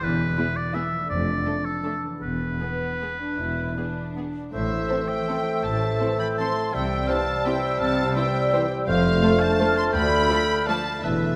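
This dark, sweeping orchestral ballroom waltz, cut from a longer piece, opens with a clear oboe line over a ringing, thumb-plucked concert harp playing arpeggios, while cellos and double basses hold the bass. At 0.4 seconds the muted string sections join: the violins carry a lush, veiled melody with vibrato, a second violin line with a smooth top sits in the background, and the violas add distant accompaniment. At 4.5 seconds the music moves into a new section as a hollow, pure-toned concert flute and a warm clarinet add second lines in the background, and a mellow bassoon supplies accompaniment with light vibrato. A very quiet French horn section enters at 4.9 seconds with mellow, sustained chords. The waltz moves in three with a free, rubato feel, and the harmony moves from E through D minor into A minor, C, F and back to D minor. A wet scoring stage reverb wraps the ensemble.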